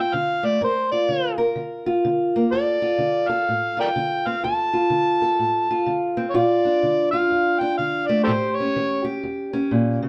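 A gritty, overdriven harmonica carries the soulful, mournful melody up front with light vibrato, scooped notes, tongue slaps and a jazz-inflected touch until 9.0 seconds, over a boxy, dark parlour steel-string guitar that is fingerpicked through to 10.1 seconds, in a swung acoustic country blues excerpt that moves from Dm7 and Gm7 toward a closing A7, set in a wet studio reverb with a dark, warm production.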